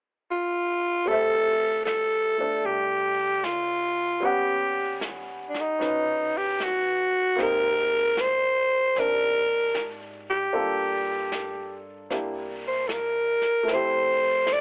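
Late-night and tender, this swung jazz ballad at 76 BPM opens with a breathy, raspy, growling alto saxophone alone, up front with light vibrato, before a boxy upright piano, a woody pizzicato upright bass deep in the background and a brushed drum kit join at 1.1 seconds under chords moving from Fmaj9 through Eb7alt and Abmaj9 to Gm9 and C9, all through a dry, gritty telephone-like sound with light reverb in this brief cut from a longer piece.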